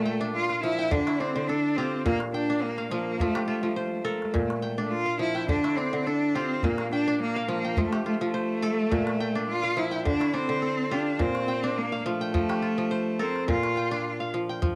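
West African traditional string music at 105 BPM in 4/4, flowing and joyful, where a bright, fingerpicked kora rings out crisp arpeggios over a Bb, Dm, Bb and F cycle while a rich, focused bowed cello with vibrato sings the melody from A3 to F4 with a cassette-tape tint, and a small, compressed, saturated calabash keeps the percussion, all captured in a light small-room reverb on a home cassette recording cut from a longer piece.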